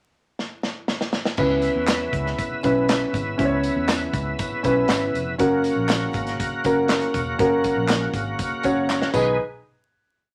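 Vinyl crackle and a snug small-room reverb frame this joyful, danceable 1960s-style soul piece at 120 BPM, which opens with a drum fill from 0.4 seconds before the full band arrives at 1.4 seconds. The up-front acoustic kit sets a backbeat soul groove with a tight kick and subdued cymbals, while a woody, mellow upright piano pushes close-voiced chords with grace notes and a bright tonewheel organ holds a shouting, lightly overdriven pad through slow rotary speaker and chorus vibrato. Underneath, a round, punchy, foam-muted electric bass plays a syncopated melodic line with ghost notes, tambourine and group handclaps mark the backbeat in the background, and the harmony moves from C#m7 to F# and a brief B6 before a second fill leads into the final hit.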